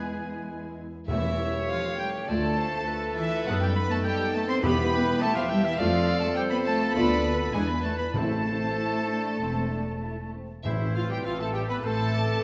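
Muted violins carry the melody in a high register, their veiled, con sordino tone softened by vibrato in this stormy, restless fragment of a quick classical-period movement in four, played with a flexible, rubato feel. Around them, a clear clarinet, an oboe with a vintage edge, an airy flute in the background and a distant second violin line weave supporting parts. Muted violas accompany, while the cellos and double basses, the most prominent voices in level, anchor the bass with a dark, bowed weight. Mellow French horns hold sustained chords and a dark, roomy trumpet section adds stabs, as timpani struck with hard mallets sound between 1.1 and 11.5 seconds. A distant bassoon joins at 10.7 seconds, and the whole passage sits in a generous scoring-stage reverb as the harmony turns through restless minor-key changes.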